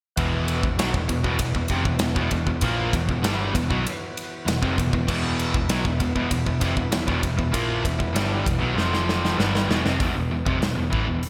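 A heavy, menacing hard rock groove opens at 0.2 seconds with the full band entering together at 98 BPM in a straight 4/4, centred on E minor. A punchy, up-front rock drum kit with bright cymbals, a medium-tuned snare and gated reverb drives the riff, which is carried by a bright, high-gain distorted guitar joined by a second overdriven guitar sitting in the background. Beneath them, a dark, round hollow-body bass plays low in its register. A thick, gritty tonewheel organ holds sustained chords in the background, with percussive key click, chorus vibrato and a slow rotary speaker. A drum fill runs from 8.8 seconds as the harmony moves briefly to F5 before returning to E minor, and the organ drops out at 10.0 seconds as the band lands on an E5 power chord. The bright 1980s-style digital production places the whole band in a lush hall reverb, and the clip is cut from a longer piece.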